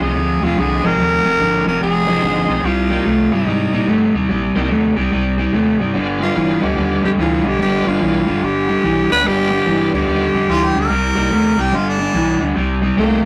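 Electric blues shuffle at 145 BPM in C minor, soulful and smoky, with a raspy, growling tenor saxophone carrying the melody up front over a picked, overdriven semi-hollow guitar riff, a shouting tonewheel organ through a slow rotary speaker and chorus vibrato, and a round, punchy fingered bass, while a bright harmonica with tongue slaps and scooped notes adds a second line from 10.5 to 12.5 seconds, all in a rough rehearsal-room recording with small-room ambience and warm saturation.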